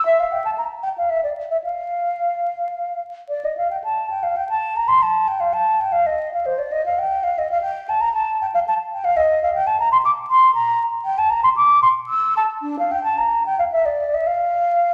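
A mellow, hollow concert flute plays alone and up front, spinning a serene, flowing line in the manner of a baroque-style fantasia. Its tone is pure, with vibrato, soft attacks and lifted highs, and the melody ranges from D4 up to E6. The phrasing is loose and rubato over a lilting three-beat metre, with a short opening statement giving way at 3.3 seconds to a longer return of the same material that runs to 14.9 seconds. A wet recital hall reverb surrounds the flute, and a vinyl crackle sits underneath, lending the classical performance an aged, intimate character. The passage is cut from a longer piece.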